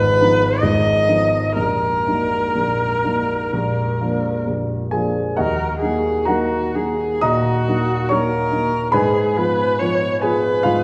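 A bowed viola and a dark baby grand piano begin together in this elegiac, yearning romantic classical duo, a brief passage cut from a longer piece in E-flat minor, tuned to A4 = 443 Hz. The viola carries the melody between Gb4 and Eb5 with a rich, expressive tone, soft attacks, vibrato and portamento, a single player heard up front yet with a distant quality. The piano supplies accompaniment across a broad range from Bb0 to Eb6, its mellow voice and long sustain also placed up front. The 4/4 pulse moves freely with rubato between 58 and 75 BPM, with harmony passing from Fm7b5/Ab through Ebm/Bb to Bb before a second section opens on Ebm at 5.4 s and turns to Fdim/Ab at 8.9 s. A wet recital hall reverb with a 1.2-second decay places the duo further back in the room, and both instruments sound until the cut at 10.8 s.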